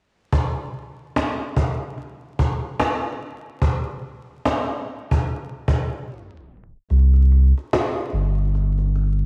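Lo-fi hip hop with a melancholic, hazy mood, this short cut from a longer piece rides a lazy swing on the sixteenths. A snappy acoustic cajon with snares carries the groove from the start, sitting up front yet carrying the air of a large room, with a cassette-tape grit on its sound. Around 6.1 s the music breaks with a tape stop, giving the home-recorded cassette feel, with its vinyl crackle and light reverb, a moment in the spotlight. At 6.9 s a round, sine-like sub bass enters, deep and sustained with a fast attack, holding the low end from G1 to C2 while the kick drops away. The cajon stops at 9.1 s, leaving the bass to carry the final moment.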